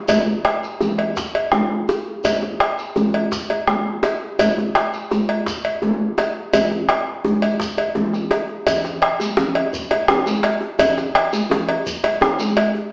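A straight 12/8 pulse at 112 BPM, counted in dotted quarters, drives this traditional West African drum ensemble, with all five players entering together at 0.1 s and a new section arriving at 8.7 s. A metallic cowbell sits close, dry and up front beside a round bombo, while a tight, cracking djembe with metal rattles is played with soft hands. Ringing, high-tuned congas are also up front though set distant in a large room, and a grainy, mellow shekere lies further back. The driving, powerful fragment, cut from a longer piece, was captured live in one room with a wet studio reverb and a small-speaker quality.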